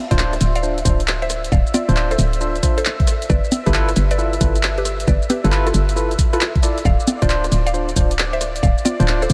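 Moody and skippy, this short UK garage two-step excerpt at 135 BPM swings through D dorian over Dm7 and G13, as a hollow, bouncy FM bass sits up front beneath a layered knocking kick and a punchy, tape-tinged analog drum machine of congas, handclaps, hi-hat, rim click and shaker, while a woody mallet-like synth pluck carries the melody with chorus and delay, a barky overdriven tine electric piano adds gritty 12-bit stabs through a combo amp, and a smooth detuned sawtooth pad pumps softly in the background under light reverb.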